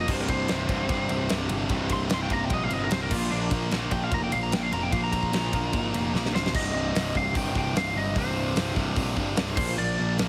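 A straight 4/4 beat from a big acoustic rock kit anchors this aggressive, heavy hard rock excerpt, with a punchy kick, fat snare and bright cymbals sitting up front in a big room. Beneath it, a picked electric bass growls in the low register with a fuzzy, overdriven tone. Two distorted rhythm guitars hold the riff in the background, one sludgy and overdriven, the other tight and bright, while a very quiet, dark, double-tracked overdriven guitar adds a third riff layer until about 6.3 seconds. Over the top, a slightly broken-up, twangy lead guitar plays a compressed solo through the opening section over C5 and Bb5 harmony. A drum fill at 6.1 seconds ushers in the second section, where the harmony moves to Cm and then Bb. The mix carries light reverb and a heavily compressed, radio-like sound.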